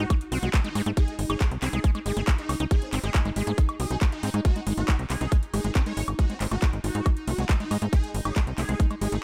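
A punchy, digitally ambient psychedelic trance excerpt, intense and straight in 4/4, opens on a barely audible sub drop as a tight, up-front electronic kick and metallic-hatted garage kit with handclaps and woodblock drive a nasal, tube-saturated sawtooth sequencer bass, while a bright, detuned swarming rave lead with portamento rides over a squelchy, distorted acid riff in the background, a pulsing gated triangle texture with reverb, and a very quiet formant-sweep wobble bass from 0.6 to 8.4 seconds, the upper synths all pumping with sidechain.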